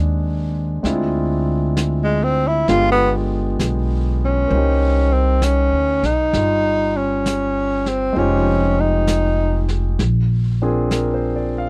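A slow 66 BPM swing in 4/4 underpins this intimate, late-night jazz ballad excerpt: a woody, thumpy pizzicato upright bass and a polished concert grand piano with deep bass, long sustain and audible action noise accompany from the start, and a dark, smooth brush kit of snare and hi-hat joins at 0.8 seconds. A breathy, whispered tenor saxophone carries the melody up front from 2.0 to 9.7 seconds, with vibrato, soft attacks and scooped notes, over chords moving from Abmaj7 through G7b9 and Cm7 to Bb7. The sound is dry and close, like a 1970s studio session.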